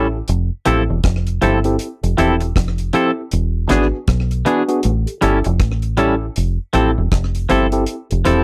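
A barky tine electric piano, lightly overdriven through a combo amp with slapback echo, opens this romantic, smooth lovers rock reggae excerpt at 79 BPM in F major, joined from the start by twangy, clean guitar stabs with subtle chorus and a round, foam-muted dub bass sitting deep and up front. At 0.3 seconds a dry acoustic reggae kit enters with tight kick, hi-hat and rim click, touched by its own slapback echo, as the swung groove moves through Fmaj7, E7 and A7 before returning to Fmaj7. The sound is close and dry, in the manner of a 1970s studio recording.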